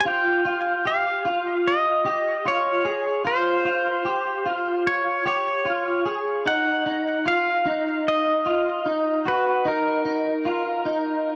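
A clean, twangy pedal steel guitar and a slightly broken-up electric guitar begin together, opening this haunting, melancholic fragment of dream pop cut from a longer piece. At a slow 75 BPM in a straight 4/4, the pedal steel carries the melody with fingerpicks, slide and volume swells, its compressed tone treated with tape echo and sitting a touch above its partner. Beneath it, the electric guitar picks arpeggios in a warm, compressed voice at the edge of break-up, colored by ensemble chorus and its own tape echo. The harmony drifts from Fmadd9 to Ebmadd9 at 6.5 seconds, then settles on a rootless Cm7 at 9.7 seconds. Both guitars sit up front in a dry, gritty hardware recording with a cassette-tape character, lightly touched by reverb and digital ambience.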